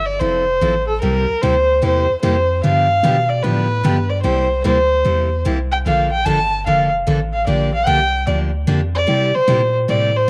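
A dark, woody fiddle carries the melody up front with light vibrato, portamento glides and a soft sul tasto tone, giving this short western swing cut from a longer country piece a down-home, playful feel over a swung 4/4 groove. Beneath it, a deep sine sub bass lands with a punchy, pitch-drop attack and sustains, while a bright, full-bodied jumbo acoustic guitar on fresh strings enters at 0.2 seconds, picking its accompaniment up front with audible finger squeak. A moderate spring reverb and small-room ambience surround the seventh-chord changes.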